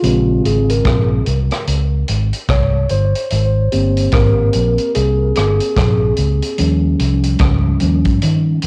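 A mellow tine electric piano takes the lead with a solo colored by cassette tape and analog delay, moving from Bbm7 to Eb7 at 6.6 seconds over a dark, round, foam-muted fingered bass and a vintage kit of punchy kick, rim click and hi-hat with a rolled-off top and its own cassette grain, in this tender, smooth lovers rock reggae fragment at a swung 73 BPM, tuned to A4 = 445 Hz, with light reverb and a homemade cassette sound.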